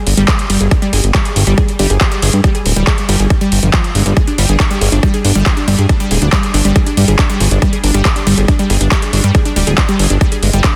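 A fat, thick sawtooth analog bass with tube saturation and a filter sweep sits up front from the start of this driving, psychedelic trance excerpt at 139 BPM, alongside a big-room dance kit of overdriven handclaps and metallic hi-hats, with a lush, detuned unison pluck riff with sidechain pumping and digital delay entering at 0.2 seconds, and a punchy, overdriven electronic kick arriving up front at 0.3 seconds, all within a dense, heavily limited modern master in light reverb.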